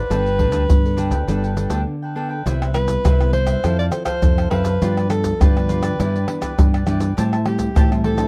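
A dark, warm production frames this festive, sunny samba-choro excerpt in C major at 102 BPM, where a breathy, whispered soprano saxophone sings the melody with scooped notes over crisp picked cavaquinho, fingerpicked nylon-string guitar in the background, a round fingered electric bass and up-front maracas, tight surdo, pandeiro and tamborim, with a break at 1.9 seconds before the new section at 2.5 seconds.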